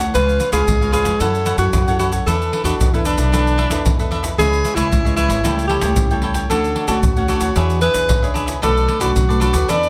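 Samba and choro at 113 BPM in a straight 4/4, this short cut from a longer piece has a sunny, playful mood. A breathy alto saxophone carries the melody from 0.1 seconds, played up front in a clear jazz style with vibrato, soft attacks and scooped notes. Beneath it, a bright, crisp picked cavaquinho and a small, fingerpicked nylon-string guitar fill in the harmony as chords move through C#7, F#m7, E7sus4 and on toward Dmaj7, E6 and Bm7. A woody pizzicato upright bass with steel strings anchors the low end, while tube shaker, deep surdo and pandeiro sit up front with a live-room feel. Light reverb and close, detailed microphones keep the acoustic ensemble intimate and present.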